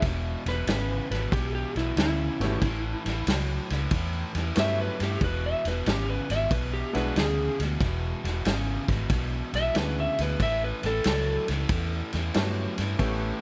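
Electric blues shuffle with a gritty, rollicking swing, heard as an excerpt from a longer piece, where a slightly broken-up slide guitar carries the melody as a solo through a digital delay until 11.5 s. Beneath it, a cranked stack guitar plays an overdriven riff, a woody, brilliant upright piano adds accompaniment with long sustain, and a round, foam-muted fingered bass sits up front. A mid-forward soul drum kit of kick, snare and ride sounds close and tight, its top rolled off, in a mix with little reverb.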